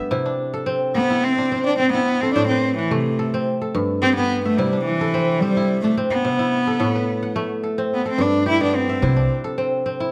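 A straight 4/4 pulse at 108 BPM drives this hypnotic, joyful West African string and xylophone piece in C Lydian, cut from a longer performance, with a fingerpicked kora spinning crisp, ringing arpeggios up front over a C, Am, G cycle. From 1.0 s a solo cello carries the melody with an airy sul tasto bow, soft attack and light vibrato, intimate and close in a moderate recital hall reverb. At 9.0 s a woody, thumpy pizzicato upright bass on gut strings lands briefly on a low C as the chords return home.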